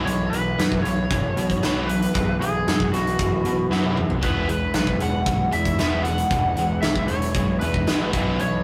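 A dark, round tonewheel organ holds very quiet sustained chords through a rotary speaker. Beneath it, a faint cranked stack guitar and a tight distorted guitar in the background play riffs in E major at 115 BPM. A moment later an overdriven slide guitar played with fingerpicks carries the melody, alongside a punchy fuzz bass and a big, natural-sounding rock kit up front with a punchy kick. This driving, swaggering classic rock passage moves from Bsus4 to E after a drum fill at 3.7 seconds, all set in a rough rehearsal-room sound with moderate stone-room reverb.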